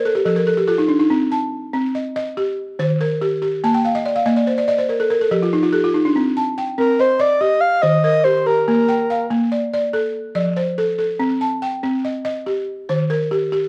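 A woody, buzzing balafon opens this reflective, hypnotic West African traditional piece in a straight 12/8, playing arpeggios over a repeating F, C minor, E-flat and B-flat cycle, with a fill at the start and another from 3.6 seconds. At 6.8 seconds a breathy, flute-like synth lead with a soft attack, chorus, tremolo and vibrato carries a brief sustained melody, stopping at 9.3 seconds while the balafon continues. Both parts sit up front under light reverb, captured by close, detailed microphones, in a passage cut from a longer piece.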